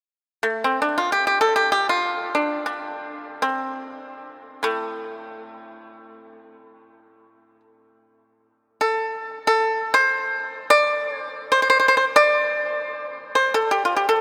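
A solo pipa, played with fingerpicks and placed up front with a warm, percussive and dry acoustic tone, enters at 0.4 seconds and ranges from A2 to D5 in free time. Tuned to A4 = 444 Hz, it carries this contemplative, longing fragment of Chinese traditional plucked-string music, cut from a longer piece and set in a church or concert hall whose cathedral reverb lingers for 6.7 seconds.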